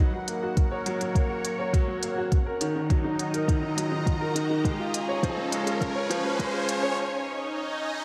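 Piano and strings electronica at 103 BPM in F# major, this short fragment from a longer piece feels luminous and tender. A clear upright piano sits up front with a woody, vintage tone and long sustain, playing a riff colored by tape echo until 7.0 seconds. Beneath it, a lush, thick unison pad of detuned sawtooth and square waves with a sub octave holds sustained chords, its slow attack and long release softened by chorus and phaser. A soft electronic kick and crisp hats give the pulse in a small room, while an electronic riser builds in the background. The whole passage is a build-up moving from F# to C# and then B, shaped by a filter sweep, before a brief break at 7.0 seconds where only the pad rings on in the dark, moderate hall reverb.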